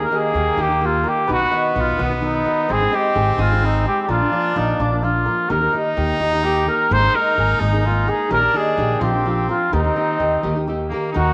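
In a 6/8 at 85 BPM, this romantic, proud mariachi passage in Eb major, cut from a longer piece, puts a mellow, vintage trumpet up front with the melody while a clear, distant second trumpet carries a supporting line in a roomy space. Beneath them, a full-bodied fingerpicked nylon-string guitar and a woody pizzicato upright bass anchor the harmony, with a hammered cimbalom adding shimmering, ringing arpeggios with a slapback echo. The whole group sits in a moderate echo chamber, moving from Eb through B and Ab to Bb before resolving back to Eb at 9.7 seconds.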